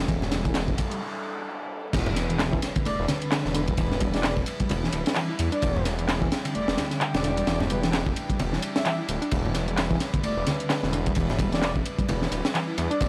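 A dry, gritty hardware sound with transformer saturation, vinyl crackle and a touch of small-room reverb frames this raw, energetic breakbeat cut from a longer piece, moving at 130 BPM in 4/4 with a 58% swing on the sixteenths and resting on an E minor seventh chord. Up front, a crunchy breakbeat kit with a punchy kick, high-tuned snare and dark, rolled-off cymbals is layered with an electronic house kit's handclaps and bright hi-hats, while ringing, hard-handed congas sit close and dry in the background. A thick, menacing detuned saw bass holds the low end, and a reedy, worn electric piano plays a slightly out-of-tune riff through fast tremolo, overdrive and vintage 12-bit sampler grit. Behind them, a distant chamber string section with a gut-string, period-style tone sustains bowed chords that pump against a sidechain. A noise sweep runs from 0.7 seconds into a short break, and the drop lands with an impact at 1.9 seconds. 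A soft, breathy flute-like synth lead enters at 2.9 seconds, colored by chorus, tremolo, analog delay and a telephone filter.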